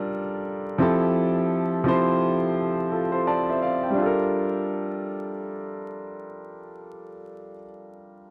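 A dry, close 1970s-style studio sound with vinyl crackle frames this short R&B excerpt, cut from a longer piece and set at 85 BPM in G dorian with a 16th-note swing feel. A clear concert grand piano sits up front as the sole accompaniment, its deep bass and long, natural sustain carrying sultry, introspective Gm9 and Fmaj9 chords. A piano fill arrives at 2.9 seconds, and the passage returns to Gm9 at 4.0 seconds as a new section begins.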